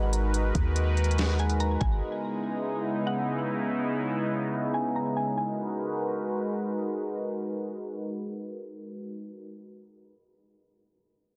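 Atmospheric cloud-rap hip hop in G# minor at 143 BPM with a half-time feel, ethereal and hazy, moving from G#m7 to C#m7 and back to G#m7 at 5.4 seconds under a filter sweep that runs to that point. A bright, resonant sawtooth pad holds sustained chords with chorus and sidechain pumping throughout, while a deep, boomy 808-style sine bass and a smooth, tape-warm electronic kit with a knocking kick, deep snare and smooth hats sit up front only in the opening two seconds. From 1.4 seconds a woody, round FM mallet pluck drifts in the background with chorus, low-pass filtering and digital delay, all inside a digital ambience and a dense, heavily limited modern master.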